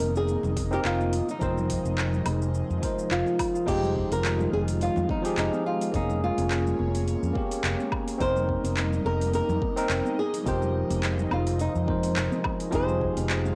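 Dry, gritty sound with cassette tape and transformer saturation frames this relaxed, wistful sunset chillout excerpt in F minor at 106 BPM with a swung 16th feel, where a fingerpicked flamenco guitar with audible finger squeak carries the melody through tape echo over a bell-like, barky tine electric piano that is filter-swept until 3.7 s, an airy, breathy pad with chorus and phaser in the background, a dark, punchy fretless bass up front, an overdriven deep house kit of metallic hi-hats, handclaps, shaker, woodblock and crash with a deep electronic kick entering at 0.6 s, distant, very quiet congas, and a soft, round pluck arpeggio appearing at 12.7 s.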